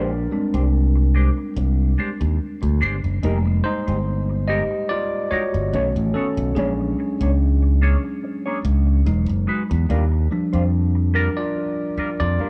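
A light reverb and small-room ambience frame this short, smooth soul cut at 72 BPM in 4/4 with a gentle sixteenth-note swing. A worn, slightly out-of-tune tine electric piano sits up front and takes a clean, direct solo across the whole 12.5 seconds over chords moving from Bb13 and Fm11 to Emaj9 and Ebmaj9. A dark, fingered electric guitar riff with wah and subtle chorus sits lower in the mix, while a bright, punchy fingered electric bass drives the silky mood from below.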